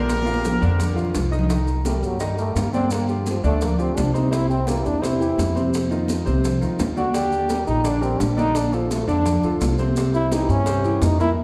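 Driving straight 4/4 at 170 BPM, ringing, high-tuned congas in the distance, tight, saturated bongos and grainy, close maracas sit beneath a woody, pizzicato upright bass up front and a natural concert grand piano with deep bass in this festive, danceable salsa excerpt, as a punchy, bright trumpet section states a brief opening line until 1.1 seconds before a present, up-front trombone with light vibrato takes a solo from 1.9 seconds over chords moving from Cm7 to C7, set in a reverberant recital-hall space.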